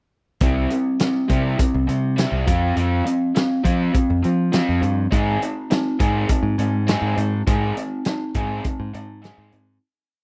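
Indie rock at 102 BPM in 4/4 with a straight, carefree and upbeat feel, this short piece is a single verse running from 0.4 to 9.8 seconds and fading out from 7.5 seconds. A crunchy overdriven, double-tracked electric guitar plays palm-muted eighth notes up front, beside a bright, punchy picked electric bass riding a syncopated riff and a loose acoustic drum kit with a punchy kick, medium-tuned snare and hi-hat, gritty and saturated with a rolled-off top, driving a big rock groove. The dry, close 1970s-style studio sound sits in small room ambience as the chords move from C to F5 to Ab.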